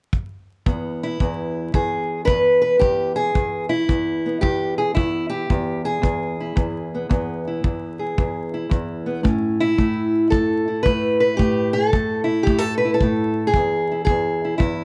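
Soulful and swaggering, this short excerpt of acoustic country blues swings at 112 BPM in E major, with a punchy, small-room kick drum entering at 0.1 seconds and a dark, boxy parlour-style fingerpicked steel-string acoustic guitar carrying the melody up front from 0.7 seconds through plate reverb, moving from E to A at 9.2 seconds and back to E at 13.5 seconds beneath light reverb and vinyl crackle.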